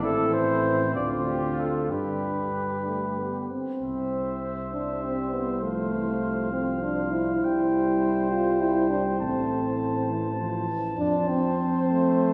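Noble and triumphant, this classical brass quintet passage in rubato 6/8 is cut from a longer piece and heard from further back in a scoring stage with a lush, lingering reverb. A mellow, vintage-toned trumpet carries the melody above a clear flugelhorn second line with vibrato, while a warm French horn, a smooth-topped trombone in the background and a dark tuba bass fill out the harmony. All five players sound together throughout the 12.3 seconds, with a new section beginning at 3.8 s.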